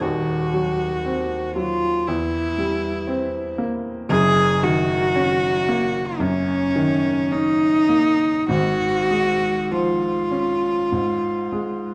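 A bowed cello and a baby grand piano open together in a lyrical, tender Romantic duo, the cello singing the melody with light vibrato, a soft attack and an airy sul tasto tone, intimate and close, while the clear, natural piano supports it from beneath with short sustain. The pulse is slow and rubato in four, moving through darkened harmonies before settling onto a Db/Ab chord near 8.5 seconds. A moderate recital hall reverb surrounds this dark, warm production of a brief passage cut from a longer work.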